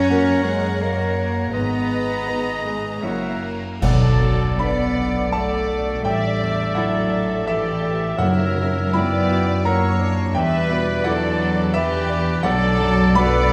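In a rubato 3/4 that drifts between 73 and 87 BPM, this sorrowful, longing film-score passage, cut from a longer piece, moves slowly and settles into B minor at 3.8 seconds. A soft-attack, sul tasto violin section carries the melody from a floating, distant place in the background, joined by a woody, vibrato-laden second violin section, a clear, close-miked solo clarinet, a hollow concert flute and a roomy solo oboe. A clear grand piano with a vintage, short-sustain tone supplies the main accompaniment, alongside an intimate, dark viola section, while a distant French horn section holds sustained chords. The bass is anchored by a dark, woody double bass section and a pure, floating cello section. At 3.8 seconds the whole band accents the arrival of B minor, with bright clash cymbals and concert bass drum and round, soft-mallet timpani, and the timpani return at 8.2 seconds. Wet scoring-stage reverb wraps the orchestra in a cinematic sense of space.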